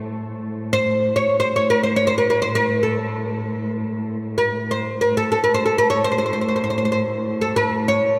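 In free time, this festive, passionate Arabic maqam ensemble piece, cut from a longer work, opens with a dark chamber cello section holding a low bowed drone, played sul tasto with vibrato. At 0.7 s a bright, fretless oud enters up front with the melody, its plectrum-plucked double strings sounding woody and deep above the softer cellos. A long, wet cathedral reverb gives the whole performance the resonance of a church or concert hall.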